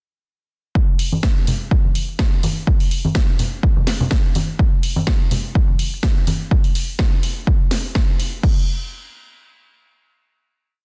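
A dense, heavily limited modern master bathed in digital ambience carries this sunny, joyful house piece at 125 BPM in 4/4 with a 54% swing on 16ths: a punchy, overdriven electronic kick drum sits up front in a four-on-the-floor pulse from 0.8 seconds; a house drum kit adds a cracking, tape-warm snare backbeat, programmed hi-hats and crash cymbal, with sidechain pumping on hats and cymbals; close, ringing maracas and congas pump under a low-pass filter until 6.5 seconds; and a filter sweep runs across the drums through the groove before a final hit lands at 8.4 seconds.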